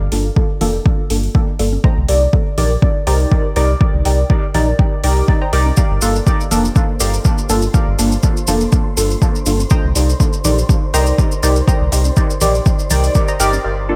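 A deep, hypnotic dub techno excerpt cut from a longer piece, built on a gentle swing and moving between Gm7 and Cm7. A punchy, overdriven kick sits up front with a round, dark analog bass, while metallic, overdriven hi-hats tick along and dry congas and bongos sit in the background, the bass and hand drums both carrying sidechain pumping. The main harmony comes from a soft, mellow chord stab that evolves through a filter sweep, treated with chorus, phaser and dub echo. Behind it, a muted, plucky dub chord stab repeats a riff through its own chorus and echo. Grainy, saturated maracas join at 5.8 seconds, and an airy, breathy wind-like noise texture drifts in at 6.9 seconds with a slow attack and long release. The whole thing carries light reverb and a bright 1980s-style digital sheen.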